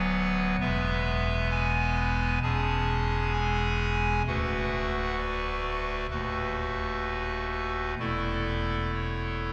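A spacious church acoustic surrounds this short classical excerpt, its reverb lingering for about 3.4 seconds after each chord. A lone pipe organ plays a majestic, reverent chorale at a slow 65 BPM in a straight 4/4, tuned to A4 = 441 Hz. The organ speaks through a clarinet reed solo stop with baroque voicing, giving a hollow tone with a touch of chiff at the start of each note, and it sits up front in the mix. Its range stretches from a deep D1 to A5 above. The harmony moves from Bm/D through E, C#m/E, Bm7/D and B7/D#, arriving on A/E at 8.0 seconds, before the fragment breaks off at 9.5 seconds.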